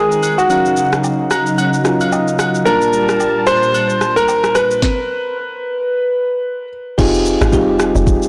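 Hypnotic and deep, this amapiano excerpt moves at 111 BPM in 4/4 with a swung sixteenth-note feel, drifting through Fm9, Ebm9 and Gm9 chords. A grand piano carries the melody up front with long sustain, softened by a low-pass filter and touched with delay, while round, mellow electric-piano-like synth keys with chorus fill out the accompaniment and add a fill between 1.0 and 2.7 seconds. Beneath them, a detuned sawtooth analog pad holds smooth sustained chords with chorus and sidechain pumping. An electronic R&B drum kit brings a soft kick, a sharp snare with soft clipping, rim clicks, shaker and crash under a gritty 12-bit sampler character, joined early on by close, dry agogo bells and woodblock. After a stop from 4.8 seconds, the drop at 7.0 seconds brings in a tight, punchy log drum bass with a fast attack and decaying tail, all within a light reverb and a blown-out, overdriven recording.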